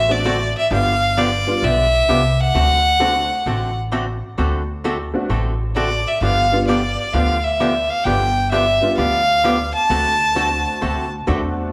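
Swinging on its eighth notes, this cheerful, down-home western swing excerpt sets a clear, up-front bowed fiddle melody with light vibrato over a dark, hollow-body archtop guitar, a jangly, detuned honky-tonk piano and a woody, thumpy upright bass, moving between D7 and G7 chords, with slapback echo on the fiddle, guitar and piano and the small-room reverb of a live club heard through the venue's PA.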